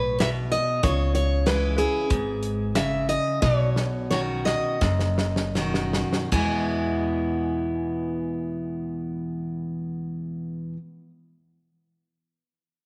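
In a straight 4/4 that slows from 0.8 to 6.3 seconds within a 76-95 BPM range, this easygoing, nostalgic honky-tonk and classic country fragment in E major sets an up-front, bright, full-bodied jumbo acoustic guitar picking the melody over a dreadnought acoustic guitar picking the accompaniment, a woody pizzicato upright bass, and a small-room drum kit with dark cymbals and a punchy kick that plays a fill before dropping out at 6.5 seconds, all moving through C#m and Badd9 to land on E in a moderate echo chamber reverb.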